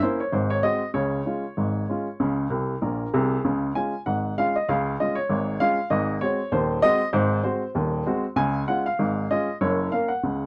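A woody, up-front upright piano carries this jaunty, cheerful ragtime fragment on its own, moving in a swung two-beat feel across a span from Eb1 up to Ab5. After a brief opening phrase, a piano fill at 2.5 s leads into a new section at 3.4 s that runs to the end at 10.5 s. Close, detailed microphones and light reverb keep the sound intimate in this short passage cut from a longer piece.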